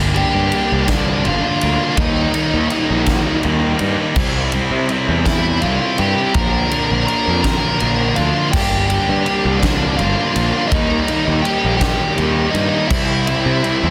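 A slow 6/8 pulse at 55 BPM, counted in dotted quarters, drives this cathartic, angsty alternative rock excerpt in G minor, anchored by a huge arena drum kit with a fat snare, punchy kick, and crash and ride cymbals in a big, natural room. A thick fuzz guitar sits in the background beside a bright, tight distorted guitar on the riff, while a fuzz picked electric bass adds overdriven weight and a dark, high-gain lead guitar carries the melody up front through analog delay. At 8.5 s a very quiet tonewheel organ enters with clean sustained chords through a fast rotary speaker, as the progression moves from Gm through Eb, C and Bb, back to Gm, then on to Ebadd9 and C, sealed in a dense, heavily limited modern master.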